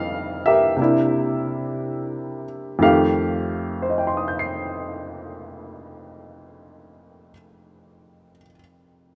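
An upright piano opens alone on an F9 chord, moves to C9, and returns to F9 at 2.8 seconds in this short solo jazz piece cut from a longer performance. The mood is sophisticated and warm, at a slow 59 BPM in 4/4 with a swung eighth-note feel, centred in F mixolydian. The piano ranges from F2 up to C7, and its tone is woody and natural with a short sustain. It sits up front and sounds intimate, with the action noise of the instrument audible. A lush hall reverb of moderate depth, with a 2.4-second decay, surrounds the piano and gives a sense of space. The mix has the rough character of a home demo, and the piano plays throughout the 9.2 seconds, moving from an opening passage into a contrasting second one.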